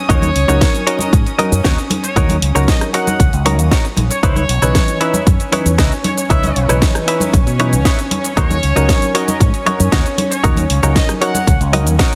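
Nu-disco at 116 BPM with a sensual, sleek mood, this short excerpt rides a punchy, up-front electronic kick, a house kit with a cracking snare, hi-hat, rim click and shaker, ringing congas in the background and a bright, envelope-filtered fingered bass, while a twangy, clean electric guitar riff with chorus and tape echo, a worn, slightly out-of-tune tine electric piano with overdrive and sampler grit, soft sul tasto chamber strings with sidechain pumping and a loose trumpet section melody move through D#m7 and C#m9 under a heavily compressed, radio-like sheen.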